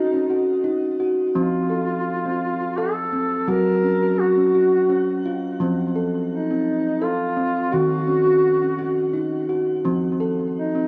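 A steel tongue drum anchors this hypnotic, gentle world meditation piece, its round, pure tones ringing out in bright, mid-forward arpeggios struck with firm rubber mallets and set up front with shimmer reverb and delay. A mellow duduk carries the solo melody in a folk style, its vibrato-laden voice sounding distant and roomy, though still up front, with its own shimmer reverb and delay. The music moves at 85 BPM in 3/4 with a light swing on the sixteenths, in F phrygian dominant tuned to A4 = 442 Hz. The chords drift through Ebm, F and Gb before returning to F at 9.9 seconds, where a brief new section begins. Both instruments play throughout this short excerpt from a longer piece, heard in a wet studio room with a short decay and the coloring of cassette tape.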